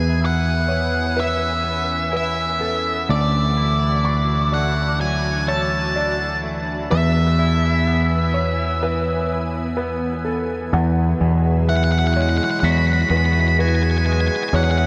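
Drenched in a vast, dreamy reverb, this hopeful, euphoric rock excerpt sets a dark, fuzzed-out octave lead guitar with tape echo up front over a round, overdriven picked bass, while a twangy, clean electric guitar with lush chorus and a felt-muted upright piano, intimate with audible action noise, spin arpeggios alongside a pure, slow-blooming organ-like pad as the chords move from E through Dadd9 and settle on Eadd9 at 10.7 seconds.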